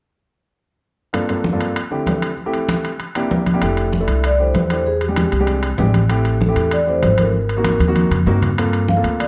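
Sophisticated and danceable, this Afro-Cuban jazz excerpt opens with a dark, short-sustained grand piano accompanying thick-skinned congas played with hard hands and ringing metal-shell timbales in a live room. At 3.6 s a woody pizzicato upright bass enters up front, and a mellow vibraphone with soft mallets and slow motor vibrato soon takes the melody with a vintage, band-limited tone over lush extended chords. A drum fill arrives at 7.8 s, all under light reverb in a warm production.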